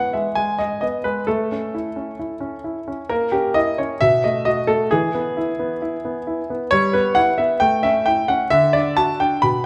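A clear grand piano plays alone from 0.0 s, carrying this elegant, cheerful classical-period sonatina in E major at 132 BPM in a straight 4/4, with a polished, intimate tone, short sustain and audible action noise sitting up front. Ranging from B2 to B5, the harmony moves through G#m, A, A#dim and B5 before settling on E, then turns toward Em/G, A and D. The moderate reverb of a recital hall surrounds the piano, and the passage is cut from a longer piece, ending at 9.7 s.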